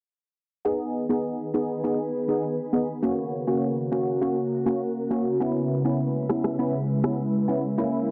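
A crisp, detuned wavetable chord stab opens this sultry, tough dancehall fragment at 101 BPM in G# minor, joined at 1.4 s by a glassy FM pad with ensemble chorus holding sustained chords over G#m, F# and C#m7, while an electronic rim click appears briefly at 6.3 s, the mix sitting in a lush hall reverb with a dense, heavily limited modern master.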